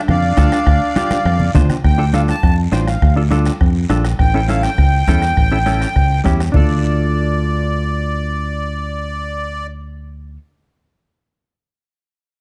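A reedy, sweet accordion with a light tremolo tuning carries the melody in this passionate, danceable cumbia fragment. A forceful, vintage jazz-style clarinet adds a brief second line that drops out at 1.5 seconds, while an up-front fingered electric bass and a clean, compressed hollow-body guitar hold the groove over a soft-beater bombo, very quiet damped congas and raspy guiro. The percussion stops at 6.6 seconds, and the accordion continues until 9.7 seconds, while bass and guitar carry on to 10.4 seconds in a dark, warm production with light reverb.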